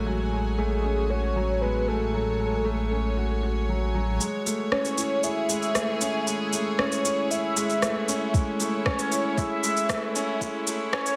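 A velvety, detuned synth lead carries the melody from 0.6 seconds in this hopeful, tender piano and strings electronica at 116 BPM in A major, treated with chorus, tremolo and tape echo over a smooth, vintage concert grand piano riff and earthy, lightly vibrato chamber strings with sidechain pumping. A rumbling, dark saw bass holds the low end until 4.2 seconds, when a low-pass filtered electronic shaker and rim click arrive to begin a build-up that shifts to Amaj7. A soft, tape-warm kick joins at 8.3 seconds, with the mix sitting in a moderate echo-chamber reverb.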